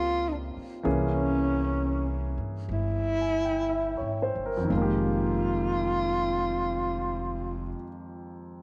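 A breathy, close-miked alto saxophone with vibrato and subtone sings an intimate, wistful melody over deep-toned concert grand piano and woody, thumpy pizzicato upright bass in this swung F-minor jazz ballad excerpt, which slows within 57-70 BPM through Gm7b5 and C7b9b13 before settling on Fm11 at 4.7 seconds, all in a moderate plate reverb, with the saxophone and bass stopping at 7.7 seconds and the piano ringing on alone until 8.6 seconds.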